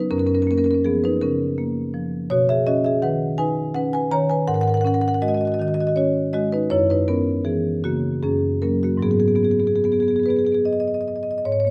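Contemporary classical music for solo marimba, reflective and hypnotic in a flexible, rubato triple metre, with the warm, up-front sound of medium mallets captured by close, detailed microphones in a moderately reverberant recital hall as the harmony drifts from Gbmaj7 through suspended and added-note chords to settle on G#m7 near 9.0 seconds in this short passage cut from a longer piece.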